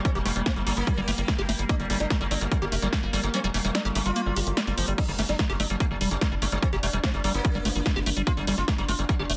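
A wave-folded, chorused drone sustaining a G5 chord in the background and a very quiet, nasal wobble bass (heard until 1.5 s and again from 6.1 s) open this driving psychedelic trance excerpt, joined at once by a buzzing, shimmering sitar melody and a squelchy acid bass riff, both phased, tape-echoed and sidechain-pumped, over a tight sawtooth sequencer bass, punchy overdriven techno drums and an up-front heavy kick that drops out from 3.3 to 5.0 seconds, all in a dense, heavily limited modern master with light digital ambience.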